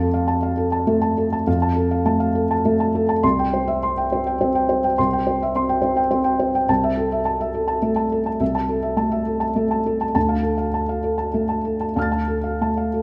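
A felt-muted upright piano plays alone, soft, dark and intimate with thick felt and sitting up front in a moderate concert hall reverb, moving through F, C, Am/C and Dm in a reflective, melancholic neoclassical minimalist piece in rubato 3/4, spanning C2 to A6 across this 13-second excerpt cut from a longer work.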